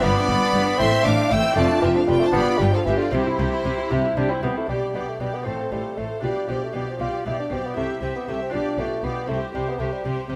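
Brilliant and festive, this short passage from a longer baroque-style concerto movement moves in a straight 6/8 at 78 beats per minute in C major, with solo episodes built into its design. A mellow solo bassoon sits up front carrying the melody in its middle register, its light vibrato heard in a roomy, distant space, and it stops at 10.0 seconds while the ensemble continues to 10.4 seconds. Above it, a rich, lush violin section also carries the melody high in its range with expressive vibrato, while a second violin section plays a smooth, even second line and a focused viola section fills in the accompaniment from a slight distance. A bright, delicate fingerpicked lute with doubled nylon strings adds sparkle in the background, and the bass is anchored by a close, rich cello section and a warm chamber double bass section with a soft attack and expressive portamento. The harmony opens on G and passes through A minor and D minor before settling on C, then a second section beginning at 4.7 seconds moves through G/B, F/A and G7/B to close on C, all captured with close, detailed microphones and light reverb.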